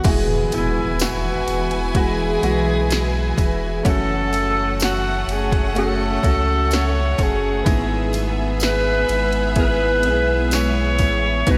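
Heartfelt and tender, this slow pop ballad moves at 63 BPM in E major, drifting through Eadd9, F#m and E/G# over its brief 11.6 seconds. A mellow alto saxophone carries the melody up front with light vibrato and a jazz-style subtone, though it sounds distant and roomy, while a clear, focused violin section plays a second line with bowed vibrato and analog delay. A warm baby grand piano accompanies through a lush chorus, an ethereal, airy pad holds sustained chords in the background, and a picked steel-string acoustic guitar adds very quiet arpeggios with a touch of finger squeak. Underneath, a thick, saturated sub bass sits up front beside a punchy, tape-warm analog drum machine of kick, snare, ride and crash, with a jingly tambourine and a background electronic impact that sounds for the first 3.9 seconds. The whole mix is dreamy and soaked in hall reverb, and this passage is cut from a longer piece.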